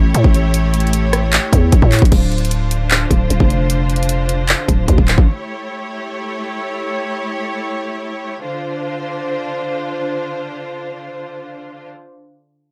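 Hip hop trap with a brooding, melancholic half-time feel, in which a distant, smooth bowed string ensemble with vibrato holds sustained chords throughout, while a growling, buzzy 808-style bass and an up-front electronic trap kit with a hard-clipped kick, bright hi-hats, handclaps, rim clicks and crash cymbal drive the opening until both stop at 5.3 seconds, leaving the strings alone until 11.9 seconds in this dry excerpt from a longer piece.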